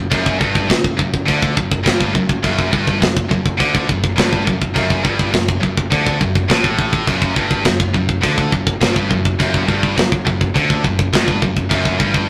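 A double-tracked, high-gain guitar riff in the low register opens this heavy, relentless heavy metal excerpt in F# minor at 104 BPM, joined at once by a growly picked electric bass sitting in the background. A tight, mid-forward acoustic drum kit with a rolled-off top comes in up front at 0.1 seconds, its crash cymbal, kick and medium-tuned snare driving a straight 4/4 feel. The whole take has the rough, tube-saturated character of a rehearsal room with a light touch of reverb.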